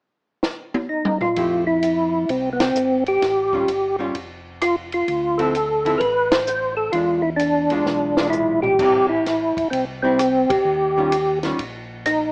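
Soul jazz organ trio in F major, swinging at 129 BPM in 4/4 with a soulful, swinging mood, heard as a short cut from a longer piece. A compact cocktail drum kit opens with a fill from 0.4 s, its dry, natural sound built on a punchy kick, a high-tuned snare and dark cymbals, with another fill near 7.9 s and band accents landing at 2.5, 6.2 and 10.4 seconds. The lead tonewheel organ enters at 0.9 s, fat and up front, with key click, third-harmonic percussion, chorus vibrato and a slow rotary speaker, carrying the melody between B3 and C5. From 1.4 s a dark, picked hollow-body archtop guitar comps underneath while a second organ supplies a round, mellow bass line, also shaded by chorus vibrato and slow rotary, over rich chords moving from Fmaj9 through Dm9 and E7b9 to Eb9. A moderate plate reverb and small room ambience frame a rough home-demo mix with a small-speaker character.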